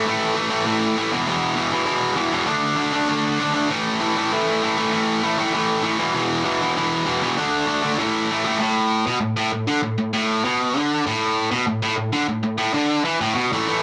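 A bright, overdriven electric guitar, picked and double-tracked, sits up front and plays alone through this energetic, upbeat punk excerpt in a straight 4/4. It runs through power chords on A, E and D, and a new section begins at 8.6 seconds. A moderate studio reverb surrounds the guitar, and the dense, heavily limited modern master keeps the sound tight and forceful until the cut at 13.8 seconds.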